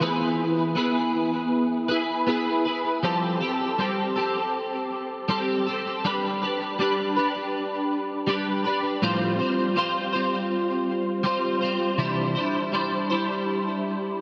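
A dreamy, reverb-soaked sound surrounds this short pop fragment, with a huge ambient tail of about 4.0 seconds hanging in the air around every note. A lone twelve-string electric guitar carries the whole piece from 0.0 to 14.2 seconds, its picked, clean tone sitting up front in the mix. Ensemble chorus and tape echo give the instrument a shimmering, doubled quality, while compression keeps its warm voice even and close. The harmony drifts from E through Fadd9, G and Fadd9/A before settling on Cadd9, with the music opening up into a new passage at 3.0 seconds. The mood is melancholic and heartbroken, a wistful moment taken from a longer piece.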